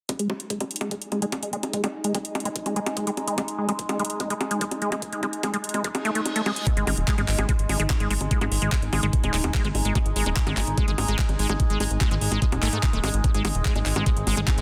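Driving and alien, this psychedelic trance excerpt runs at 146 BPM in 4/4. It opens with a knocking, tape-tinged electronic kick up front, a garage kit of bongos, handclaps and metallic hi-hats, a squelchy, resonant liquid acid bass riff under a filter sweep with chorus and digital delay, and a warbling, nostalgic lo-fi pad. At 0.8 s an overtone-sweeping drone with phaser joins the pad, both sitting in the background and pumping against the kick. A reverse cymbal rises from 6.0 s as the kick drops out at 6.3 s, and at 6.8 s a punchy, funky plucky analog bass with tube saturation enters up front to drive the second section. The mix is dense and heavily limited, with light digital ambience and small-room air on the drums.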